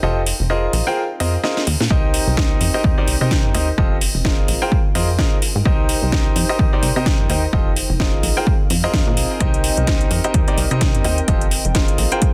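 A dense, heavily limited modern mix in a digital ambience opens this energetic, bittersweet piano house cut, where a clear, up-front baby grand piano plays a sidechain-pumped riff with delay over a plucky, funky analog bass that also pumps with the sidechain. A warbling, nostalgic tape-like pad with chorus sits very quietly beneath, while the house drum kit's cracking snare and metallic hi-hats, overdriven and re-recorded in a large room, carry the opening break and a fill from 1.4 seconds. At 1.9 seconds a punchy, overdriven electronic kick drops in as the swung groove settles into its cycle of ninth and minor seventh chords.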